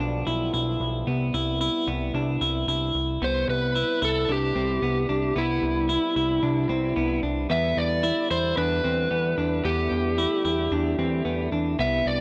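A dry, gritty recording with light reverb carries this short cut from a longer dream pop piece in C major, ethereal and blissful at a straight 112 BPM in 4/4, moving through G7/B, Cmaj7 and Em7. A twangy clean electric guitar picks arpeggios with subtle chorus and analog delay over a thick, detuned analog bass with ring modulation and a filter sweep, while a French horn section holds sustained chords with light vibrato in the background. At 3.2 seconds an overdriven slide guitar enters up front with the melody, fingered and trailed by analog delay.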